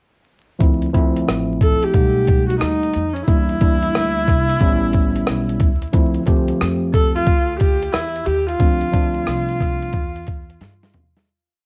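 Hip hop in a jazz-hop vein at 90 BPM in D dorian, with a nocturnal, cool mood: a gritty, compressed sampler-style drum kit sits up front with a thumpy kick and sixteenth-note hats, a woody pizzicato upright bass walks with ghost notes and chromatic approach notes, a worn, slightly out-of-tune tine electric piano pushes rootless chords through cassette tape, and a warm viola enters at 1.6 s with an airy sul tasto motif and light vibrato in tape echo and plate reverb, the home cassette recording carrying vinyl crackle through a fade-out from 8.6 s and a closing drum fill at 10.6 s.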